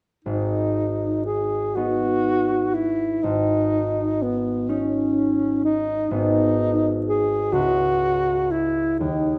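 This classical romantic duo for alto saxophone and concert harp has a yearning, elegiac mood. It moves slowly at 41 BPM in dotted quarters, in a flexible, rubato 6/8 and the key of G# minor. The alto saxophone carries the melody from 0.2 seconds, sitting up front with a warm classical tone, vibrato and a smooth top to its sound. The harp enters at 0.3 seconds as accompaniment, its thumb-plucked acoustic notes ringing out from a deep low register up to the saxophone's range. The harmony rests on G# minor, shifts to a suspended G# chord, returns to G# minor and then turns toward C# minor. A moderate recital hall reverb surrounds the pair in this brief excerpt from a longer piece.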